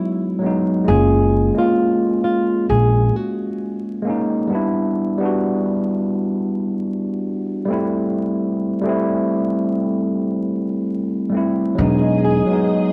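Swung sixteenths at a slow 66 BPM in 4/4 carry this nostalgic, cosy lo-fi hip hop excerpt, where a clean tine electric piano through a combo amp, softened by cassette tape and a low-pass filter, moves from a rootless Emaj9 through F#maj9, Gmaj7 and Am7/G; at 0.9 seconds a bright, boxy, fingerpicked flamenco guitar melody with audible finger squeak joins a woody, thumpy pizzicato upright bass on gut strings, and the piano carries a break on its own from 4.5 seconds until 11.8 seconds, when the bass returns beneath a shimmering vintage sawtooth string machine of violins with slow attack and ensemble chorus, all set in a light small-room reverb as a home cassette recording with vinyl crackle.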